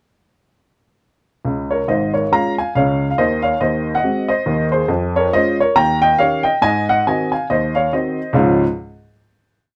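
A swung 4/4 pulse at 139 BPM drives this brief, exuberant stride piano piece in Db major. A single upright piano carries everything, entering at 1.4 seconds with a stride bass underneath and a tune voiced in thirds, ranging from deep Ab1 up to Bb5. The harmony moves from Db through Ab7 and Eb7 chords before settling on a closing Db chord at 8.4 seconds, and the piano stops at 8.6 seconds. The instrument sounds woody and slightly detuned, with its mechanical action audible, giving the playing an intimate, up-front presence. A light reverb surrounds it, keeping the sound natural and close.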